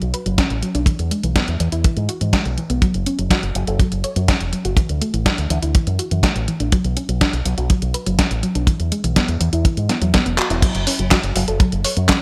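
Nostalgic and melodramatic, this short italo disco cut sets a tight, dry kick up front beside a tape-warm, detuned 8-bit drum machine of handclaps, hi-hat, crash and snare, while a dark, punchy fingered electric bass with an envelope filter and tube saturation drives underneath and a soft, round pluck with chorus and delay spins gentle arpeggios over chords moving from Bsus2 through Dadd9 and Bmadd9, until a drum fill and band accent at 10.4 seconds push into the closing F#5, all in a bright 1980s-style digital production with light reverb.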